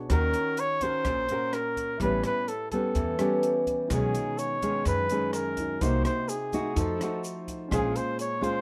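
A close-miked flugelhorn carries the melody up front in this smooth, wistful bossa nova excerpt, its soft attack, light vibrato and scooped notes giving the solo line a tender, jazz-style voice. Beside it, a full-bodied, thumb-plucked nylon-string guitar supplies classical-flavored accompaniment, while a grand piano sits in the background with long sustain and audible action noise lending an intimate, natural touch. An upright bass plays pizzicato with a woody, dark tone, and a compact cocktail kit in a small room keeps time on hi-hat, rim click and a punchy kick beneath a rolled-off top. A grainy, band-limited egg shaker joins in the background at 3.9 seconds. The harmony drifts through rich chords such as Ebm7, A9 and B69 before a Cm7b5 to F7b9 turn settles on Bbm7, all wrapped in light reverb.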